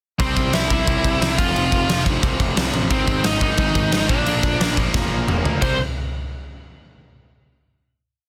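A straight, fast 4/4 pulse at 177 BPM drives this short, energetic punk rock piece, with a big acoustic drum kit set up front: a punchy kick, fat snare, toms and crash cymbal in a bright stone room, playing a punk fast groove. Beneath it, a sludgy, double-tracked electric guitar pumps driving eighth-note power chords with overdrive, while a growly, fuzzed picked bass adds its own driving eighth-note line from the background. Over the top, a dark, high-gain lead guitar carries a motif-based melody built from song-like phrases, partly doubled in octaves, through a rebellious chord progression of C, F5, Ab and Bb. A drum fill from 4.9 to 5.6 seconds leads into a final C5 chord at 5.6 seconds. The sound is dry and dense, with a heavily limited modern master.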